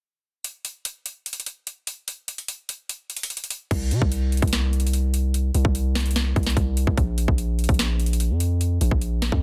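A half-time trap groove at 147 BPM drives this eerie, brooding hip hop excerpt, with an overdriven electronic drum kit of hard-clipped kick, sharp snare, metallic hi-hats and crash cymbal sitting up front from 0.4 seconds. At 3.7 seconds a deep, sine-like 808-style bass enters with long, decaying notes and a fast attack, moving between Bb1 and C3. The sound is dense and heavily limited, set in a digital ambience.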